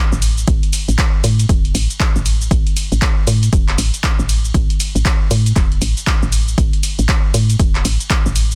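A woody, round FM bass, dark and up front with a fast attack that decays softly, opens this deep house cut together with an analog drum machine of handclaps, hi-hat, ride cymbal and shaker, re-recorded in a small room and sitting lower in the mix. At 0.5 seconds a layered, overdriven electronic kick joins, driving the 118 BPM groove with a 61% swing on the sixteenths, tuned to A4 = 437 Hz. The mood is deep and warm, the sound dry, and the master dense and heavily limited in this brief passage from a longer piece.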